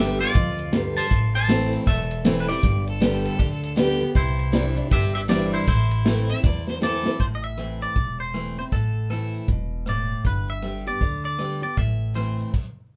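Lonesome and dusty, this short cut from a longer honky-tonk and classic country piece swings along at 158 BPM in A minor, its chords moving between Gadd9, Am and Cadd9 before settling on G and back to Am. A clean, twangy electric guitar carries the melody throughout, while a full-bodied, up-front dreadnought acoustic guitar is picked beneath it, with a little finger squeak audible. A soft, flute-like tonewheel organ sits in the background through a slow rotary speaker, key click showing, until it drops out at 7.2 seconds. A biting fiddle with light vibrato adds a bowed second line from 2.9 to 7.1 seconds. Underneath, a thumpy, woody upright bass is plucked, and a vintage kit with dark cymbals, a tight kick, rim clicks and a rolled-off top plays a fill into the second section before everything stops at 12.5 seconds, all set in a booth with moderate ambience.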